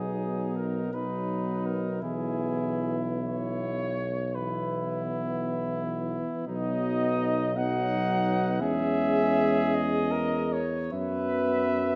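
A serene, hymn-like brass band passage in B major opens in a slow, rubato 12/8 at 46-58 BPM, with the mellow, distant cornet singing the melody up front with light vibrato over a clear, closely captured flugelhorn second line, a soft-attacked trombone and a vibrato-tinged euphonium in the background, and a vintage-toned tuba anchoring the bass up front, set in a moderate recital hall reverb.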